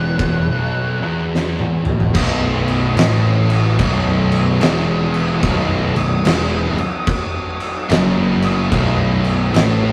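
Hypnotic and sludgy, this stoner and doom metal excerpt, cut from a longer piece, moves at a slow, swung crawl in four. A dark octave-fuzz lead guitar sounds a brief melody at the very start and stops at 1.3 seconds, giving way to a drum fill from the oversized low-tuned kit, whose fat snare, saturated grit and pumping stone-room sound sit up front. Underneath, two thick fuzz guitars each grind out a low riff, one murky and in the background, the other mellow and very quiet, while a growly, overdriven fuzz bass adds a punchy, direct-amped edge. At 2.1 seconds a heavy high-gain guitar joins with its own riff, double-tracked and bright, set back in the mix. A very quiet drone of sawtooth and sine tones holds sustained chords throughout, its resonant, moving overtones shaded by chorus, phaser and its own reverb, all captured in a rough rehearsal-room recording with a small room's ambience.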